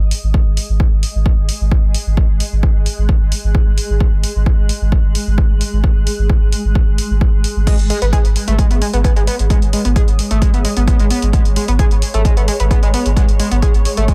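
Driving peak-time techno at 131 BPM, dark and relentless, in which an up-front punchy kick and a re-recorded analog drum machine's pumping hi-hats and crash cymbals ride over a deep, thick saturated sub bass on G#1 and a cloudy, evolving granular pad that fades in beneath, until a gritty, screaming overdriven synth lead with chorus, vibrato and dub echo joins at 7.7 seconds in a dry, echo-heavy mix.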